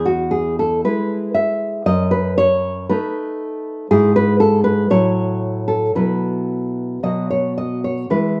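Recorded outdoors with light reverb and a softened, rolled-off top end, this short cut from a longer romantic piece puts a solo nylon-string guitar up front, its dark, full-bodied, thumb-plucked classical tone carrying a slapback echo. At 58 BPM in 2/4, the playing moves with uneven beats and free rubato, spanning E2 to E5 in a nostalgic, sunny mood. The harmony drifts from E through B7/F#, E/G# and F#m7/A before settling on Bsus4 and a B5 at 7.0 seconds.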